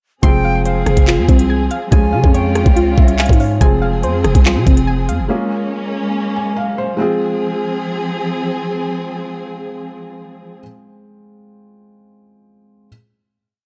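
An up-front electronic drill kit with a knocking kick, crisp skipping hats and fast hi-hat rolls drives this cold, dark, half-time drill hip hop piece in F minor at 142 BPM, joined by a growling, buzzy 808-style bass of long sub notes with pitch slides that follow the kick. A soft, round pluck with chorus, phaser and delay loops a falling eighth-note arpeggio, while a bright, airy concert flute with delay adds a sparse counter-melody until 3.1 seconds and a warm, bowed string section holds expressive sustained chords over a progression moving through Fm, Db and Bbm7. From the start, a mellow felt-muted upright piano with audible action noise loops close-voiced chords. After the beat and bass drop out around 5.3 seconds, it carries on with fills into a final Fm chord, ringing on alone until 12.9 seconds in a small, dark room.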